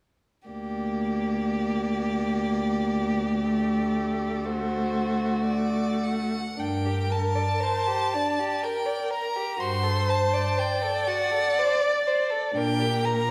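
At 0.5 s a string quartet enters together in an elegiac, melancholic slow romantic movement in triple time, the first violin carrying a clear, focused and somewhat distant melody with vibrato over a smooth, even second violin, a rich-toned bowed viola and an up-front cello bass. The pulse stretches with rubato as the opening phrase gives way to a second section at 6.6 s, the minor-key harmony moving between tonic and dominant-seventh chords. A wet recital-hall reverb surrounds the players, and the passage is cut from a longer piece, ending at 13.3 s.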